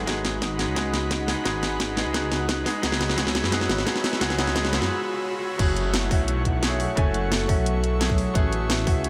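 A detuned, saturated saw bass sits up front with a menacing, evolving filter swell beneath this lush, melancholic liquid drum and bass excerpt at 174 BPM in F# dorian, moving from G#m7 and C#m7 through a build-up and drum fill, a brief break at 4.9 seconds, and a drop at 5.6 seconds onto F#m7 and Amaj7. A brilliant grand piano with audible action noise and dub echo carries the accompaniment, while a vibraphone with medium hard mallets plays ringing, smooth arpeggios through tape echo and an airy, breathy pad holds sustained chords with chorus in the background. A garage kit with a cracking snare and bright hats sits forward over a tight, high-passed electronic kick, with a very quiet riser and downlifter and light reverb around the mix.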